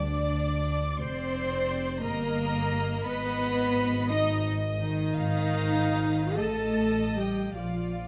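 A flowing 6/8 pulse, stretched and relaxed by rubato, carries this tender, lyrical slow romantic movement for string orchestra, heard as a short fragment of a longer piece. Two violin sections sing together throughout the 8.1 seconds: one carries the melody in a narrow span while the other floats a second line higher above it, both with a gentle, warm glow. Beneath them a dark viola section fills in the accompaniment, and the cello and double bass sections anchor the bass, the basses' deep, shadowed tone sitting up front in the mix. Every section bows with light vibrato, soft attacks and sul tasto, giving an intimate, close-up chamber sound within a moderate recital hall reverb. The harmony drifts from an opening chordless moment through Dm7/F, Eb/G and Abm before settling toward Bb at 7.6 seconds.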